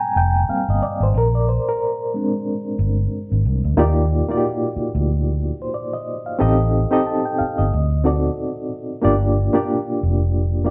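A mellow, reedy electric piano with medium tremolo carries the accompaniment in this lush 1970s-style soul excerpt at 91 BPM with a gentle 16th-note swing in Eb major, soloing through its first 3.8 seconds over chords like Abmaj9 and Bb7 before moving through Ebmaj9, Am7b5, D7b9 and Gm7, while a dark, round, foam-muted fingered electric bass sits up front from 0.2 seconds, the pair playing live together in one room bathed in wet studio reverb.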